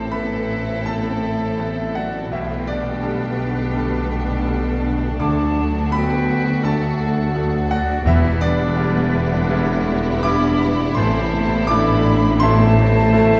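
Moving and longing, this cinematic, freely flowing orchestral excerpt sets a lush, vibrato-laden violin section on the melody over a bright small flute group, a very quiet second violin section and a soft, distant oboe on second lines, with a brilliant, short-sustain grand piano, smooth violas, dark background French horns holding chords, a faintly ringing harp playing arpeggios, clear double basses and rich cellos carrying the bass, and close calf-headed timpani sounding only from 8.1 to 9.1 seconds, heard from further back in a wet scoring-stage space.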